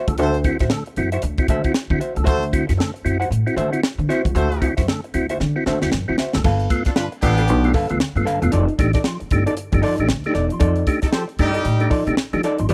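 Funk with a strutting, energetic swagger, cut from a longer piece and played with a swung sixteenth-note feel in a dry, close studio sound of the 1970s: a woody pizzicato upright bass and a crisp fusion drum kit with a high-tuned snare and tight kick sit up front, while a percussive tonewheel organ, mellow and round through chorus vibrato and a fast rotary speaker, punches out stabs. A dark, clean hollow-body jazz guitar supplies fingered accompaniment, and a horn section, distant and roomy with light vibrato, carries a second line until 7.7 seconds before returning briefly near 11.0 seconds. A drum fill at 5.4 seconds leads into a new section, where the harmony moves from D9 to G9 and then F13.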